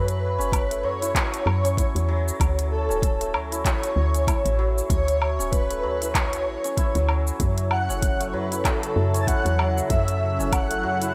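A breathy, flute-like synth lead with tremolo and chorus floats over ringing, shimmering santur arpeggios and a round, woody FM bass with sidechain pumping in this hypnotic, earthy organic downtempo excerpt at 96 BPM in F# minor, where overdriven handclaps, smooth hi-hats, shaker and woodblock with gated reverb are soon joined by a soft electronic kick, moving from F#m7 to Dmaj7 before a detuned, gritty analog pad enters at 7.4 seconds as the chords return to F#m7, all set in a lush hall with bright 1980s-style digital sheen.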